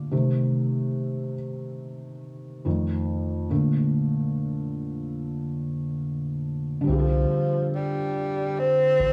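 Swung sixteenths at 71 BPM in 4/4 set a nostalgic, reflective hip hop groove in C dorian, cut from a longer piece, and a felt-muted upright piano plays alone for the first 6.9 seconds, soft and intimate with a filter sweep, cassette tape grit and plate reverb as it moves through Cm6, F7 and Bbmaj7. At 6.9 seconds the harmony settles on Csus2 as a breathy tenor saxophone enters with a mellow, subtone solo full of vibrato and scooped notes in a plate-reverbed space, joined by a round, deep analog bass of square and sine tones with a fast attack. All three parts sit up front in a small, tape-tinged room.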